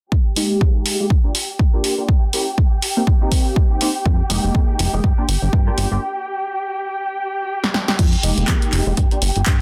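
Sensual and nostalgic, this filtered disco house passage moves at 122 BPM in 4/4 with a 16th-note swing, set in F dorian and cut from a longer piece. An overdriven, layered electronic kick sits up front beside a tape-warm analog drum machine whose punchy snare, handclaps, hi-hats and crash cymbal carry a short small-room sound, with sidechain pumping on the hats and cymbals. A funky polysynth comp with chorus, phaser and a low-pass filter plucks mellow sawtooth and pulse-wave chords through Ebadd11/Ab, Gm7, Bbdim7 and Eb6/Bb. A rich chamber violin section holds smooth, vibrato-laden bowed chords, pumping behind a low-pass filter. At 4.1 seconds a plucky, wave-folded analog bass joins on Fm11, and a filter sweep runs across the passage, with a break from 6.0 seconds and a drum fill at 7.6 seconds leading into a new section on Fm11. The dense, heavily limited modern master wraps it all in digital ambience.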